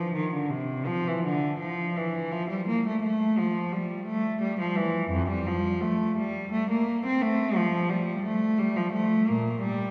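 A concert hall's long, wet reverb, lingering about 2.3 seconds, surrounds this recording, which is heard from further back in the room, though the cello itself sits up front. It is a classical, baroque-style suite movement for unaccompanied cello, cut from a longer piece and lasting just under 10 seconds. A single bowed cello plays alone throughout, its gut-string tone rich with a reedy edge that suits the period style. The line moves in a dance-like 3/4 at around 85 BPM, with a rubato feel that lets the phrasing breathe, ranging from F2 up to C4. Tuned to A4 = 438 Hz, the playing carries a radiant mood.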